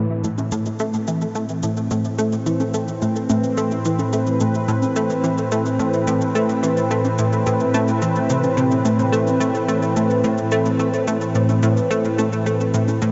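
A detuned, evolving sawtooth pad with a slow filter swell and chorus opens together with a punchy, funky analog bass riff of plucky sawtooth and square tones, its fast attack decaying through analog chorus and delay, both sitting up front in this hypnotic, expansive piece of sequencer-driven space music at 108 BPM in 4/4, A minor. From 0.2 seconds, softer electronic cabasa and congas join with their own analog delay while the harmony rests on an Amadd9 chord. The whole cut from a longer piece floats in a dreamy, reverb-soaked mix with a huge 7.6-second tail and muted highs.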